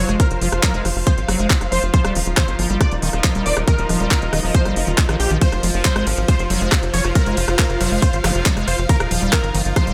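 This intense, driving psychedelic trance excerpt at 138 BPM in straight 4/4 opens with a detuned, sawtooth supersaw stab carrying the melody. It is colored by phaser, cassette tape character, dub echo and sidechain pumping. Beneath it, a squelchy, resonant liquid acid bass riff with filter sweeps, chorus and dub echo mixes with a tight, punchy sequencer bass that sits up front with a moving notch. Sustained chords come from a pulsing, tempo-synced gated texture with a soft attack, chorus and built-in reverb, while a dark, lush symphonic string section adds expressive, vibrato-rich bowed texture in the background. A layered garage kit of crisp hats, handclaps, ride cymbal and rim click enters at 0.1 seconds, followed by a tape-warm electronic kick at 0.2 seconds, re-recorded in a large room and placed up front. The harmony moves between F5 and Eb5 under light reverb, and a very quiet electronic zap flickers at 8.2 seconds.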